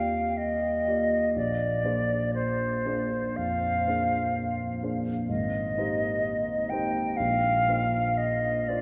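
Bathed in a long, wet cathedral reverb, this short impressionist classical passage for flute and grand piano drifts with a mysterious, wistful rubato feel, as a pure, metallic silver concert flute with vibrato and a soft attack carries the melody up front while a warm baby grand piano supplies a long-sustaining accompaniment through chords moving from Ebmaj9 to Bb9, Abmaj9 and Bbadd9.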